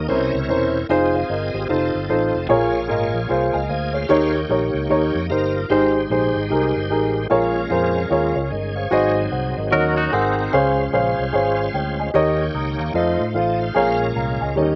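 Soulful and reverent, this uptempo gospel excerpt swings in 4/4 at 149 BPM, with a dark, woody upright piano up front carrying the accompaniment through a chord run that opens on C7b9 and moves through Fm7, Bbm7 and Abmaj7. Beneath it, a round, amped fingered electric bass holds the low end while a bright, shouting tonewheel organ sustains chords through a fast rotary speaker with light overdrive and chorus vibrato. A clean, twangy electric guitar with tremolo slips in a brief second line from 9.7 to 10.5 seconds, and the whole sits dry, recorded outdoors with little reverb or room sound.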